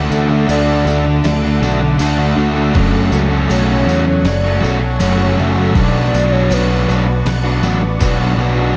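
A growly, up-front picked electric bass anchors this hazy, wistful shoegaze and dream pop excerpt at 80 BPM, joined by two crunchy overdriven guitar riffs (one with subtle chorus, the other tucked back with reverse reverb), a round sine lead with chorus, analog delay and vibrato that stops at 7.3 seconds, a silky phased string machine holding chords over Dadd9, F#madd9 and Bmadd9, a jingly close tambourine, and a gritty, overdriven sampler-style drum kit with thumpy kick, snare and crash entering at 0.5 seconds, all soaked in a dreamy plate reverb.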